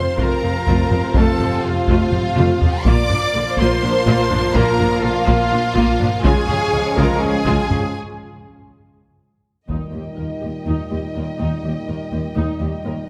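Pulsing in a brisk 7/8 at 247 BPM counted in eighths, this triumphant, majestic fragment of an epic orchestral film score moves from F through Bb and Db before settling into Eb major at 9.7 s. The violins carry the melody in a smooth, vibrato-rich high register, while a second violin line sits softly in the background and violas and cellos fill out the accompaniment and bass, the cellos adding expressive portamento. Woody, dark double basses anchor the low end, a focused string section holds sustained chords until 7.9 s, and mellow French horns and very quiet, bright trombones hold sustained harmony. A trumpet section punctuates with stabs, and a close, dry taiko ensemble struck with heavy sticks drives the rhythm, with fills at 2.1 s and 9.0 s framing a break that begins at 8.0 s. Timpani enter briefly on Eb3 as the key arrives, all set within a moderate scoring-stage reverb that lends the lush sections a grand sense of space.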